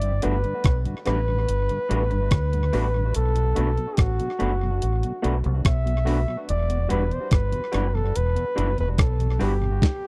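Tender and sweet, this short slice of lovers rock reggae at 72 BPM sets a warm, scooping flugelhorn melody with tape echo over a deep, round dub bass, a crisp, thumpy 8-bit drum machine up front, dark slightly broken-up guitar stabs, and a barky tine electric piano and mellow rotary organ in the background, all in a dry, close 1970s-style sound moving through Gmaj7, Bm7 and Em7.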